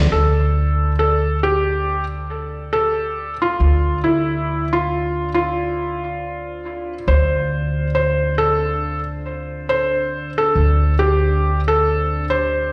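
Smoky and melancholic, this short trip hop excerpt at 69 BPM in D minor rests on a single Dm7 chord, with a woody, thumpy pizzicato upright bass up front, a soft felt-muted upright piano melody with audible action noise and dub echo entering at 0.1 seconds, and a dark, detuned analog pad with chorus and phaser sitting in the background, all heard through the stone reverb of a bare room played over a big sound system.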